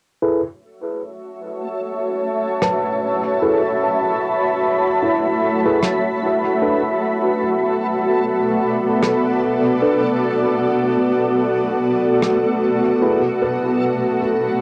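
A clean, direct tine electric piano opens this ambient dub excerpt at 0.2 s with stabs in the middle register, passed through a low-pass filter and a dub echo. A bright, cloudy granular pad soon enters up front with slow-attack, detuned sustained chords, joined by a reversed, dreamy swelling texture sitting lower in the mix. At 2.6 s a soft, felt-muted upright piano adds mellow, intimate arpeggios with tape echo and a filter sweep, returning briefly near the close, while a dark, smooth rim click played with brushes carries a dub echo of its own. The mood is deep and spacious at 75 BPM in 4/4 with a swung sixteenth-note feel in F# minor, the harmony moving from F#m11 to Bm7 and back to F#m11. Every part carries a vintage cassette-tape character, heard as a home recording with moderate studio reverb.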